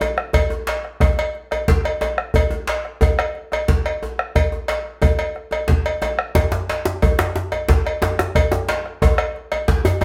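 Driving and powerful, this passage from a longer West African traditional drum ensemble piece moves at 120 BPM in a straight 12/8, set in moderate studio reverb. An up-front metallic cowbell and a tight, cracking djembe played with hard hands in a live room, its metal rattles buzzing, run throughout, while a round, close bombo sits slightly louder underneath from 0.2 s. At 6.4 s a second rattling djembe joins, played with soft hands in a small room.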